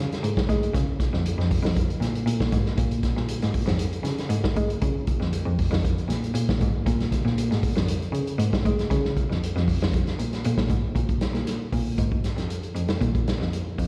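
A straight 4/4 groove at 117 BPM drives this hypnotic afrobeat excerpt in Bb minor, carried by a vintage acoustic drum kit of hi-hat, kick drum and snare drum that enters at 0.1 s. The kit sounds lo-fi and muffled, with a tight kick, a medium-tuned snare and a rolled-off top, caught in a small room and placed up front. A single bowed cello takes the bass role from the very start, moving between F2 and Ab3 with a clear, biting, earthy tone and light vibrato, also sitting up front. The music shifts into a new section at 11.0 s and runs to 13.9 s, keeping its driving pulse as it is cut from a longer piece. The recording captures a live gig heard through the venue's PA, with recital hall reverb around the sound.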